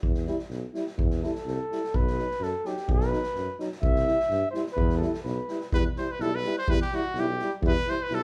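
Over a straight two-beat pulse from a boomy, roomy street-band kit and a mellow tuba bass, this bittersweet, virtuosic Balkan brass band excerpt sets two vibrato-tinged euphoniums in accompaniment, one warm and the other distant, while a smooth-topped flugelhorn carries a solo line from 1.2 seconds until a bright, punchy trumpet takes the melody at 5.7 seconds, heard in a lightly reverberant live room.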